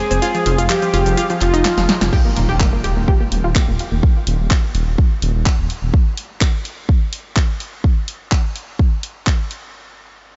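A thick, detuned unison lead sings a sustained, mellow melody with vibrato, sidechain pumping and delay over F minor, joined almost at once by a round analog pluck arpeggio with lush chorus, a dark, rumbling detuned saw bass and an overdriven deep house kit of handclaps, hi-hat, cabasa, crash and a punchy snare, all in dreamy, expansive progressive house at 126 BPM. After a drum fill, a punchy electronic kick lands up front at 2.1 seconds with a very quiet electronic impact, while a filter sweep runs across the pluck until 4.0 seconds and the harmony shifts to Eb5. The bass drops away at 5.9 seconds, leaving the drums in light reverb, with a muted top end and a faint mains hum.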